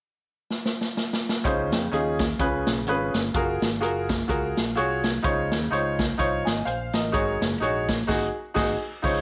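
Uplifting, jubilant uptempo gospel with a swinging feel, cut from a longer piece: a roomy big-band drum kit with a boomy kick and a rolled-off top opens with a fill at 0.5 seconds. A clear, slightly worn grand piano with short sustain joins at 1.4 seconds alongside a dark, round, punchy fingered electric bass, moving through rich major-ninth and dominant chords. The band hits a unified accent at 8.1 seconds, all set in a moderate plate reverb and small room.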